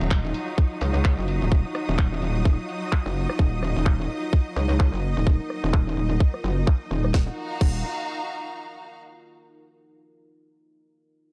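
A swung, bouncy 128 BPM bass house groove in Eb minor struts with swagger as a tight, up-front electronic kick and a garage kit of cracking snare, handclaps, rim clicks, low-passed hats and crash drive beneath a metallic, saturated wobble bass with chorus and sidechain pumping, while a deep, dark pumping pad sits in the background and a lush, bowed string section carries on alone after the rest drops out at about 7.8 seconds.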